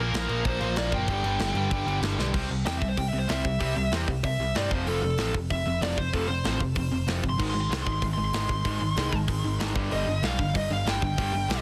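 Upbeat and rebellious, this punk rock fragment from a longer piece drives in straight 4/4 over Bb5 and G5 power chords before a drum fill at 2.2 s launches a dark, distorted lead guitar solo with digital delay from 2.3 s over C, F, Ab and G. Beneath it, a distorted electric guitar and an overdriven hollow-body semi-hollow guitar play picked riffs in the background, a double-tracked sludgy guitar sits very quiet and returns at 7.4 s, and a growly, punchy overdriven picked bass holds the low end. A tight metal drum kit sits up front with bright cymbals and soft clipping on kick and snare, all in light reverb and a dense, heavily limited modern master carrying a faint mains hum.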